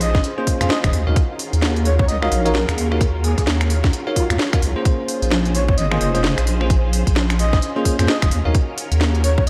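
The excerpt opens on a breathy, flute-like synth lead carrying the melody over a soft string machine, a deep wobbling bass and a garage kit of finger snaps, crisp hats and a cracking snare, with a tight electronic kick landing up front at 0.1 s. It is a moody, late-night piece of two-step UK garage with a swung 4/4 feel, its harmony moving between Bbm9 and Ebm9. The lead is soft and vibrato-laden with a sub octave and a noise layer, coloured by chorus and tape echo. The bass is dark, saturated and detuned, sitting prominently beneath a silky, mellow string bed that pumps with sidechain compression and shimmers through phaser and ensemble chorus, while a very quiet granular cloud pad blurs and evolves behind it. From 0.4 s to 8.6 s a bell-like tine electric piano adds bright, clean stabs treated with lush chorus and tape echo, and the whole dreamy mix is soaked in a lush hall reverb.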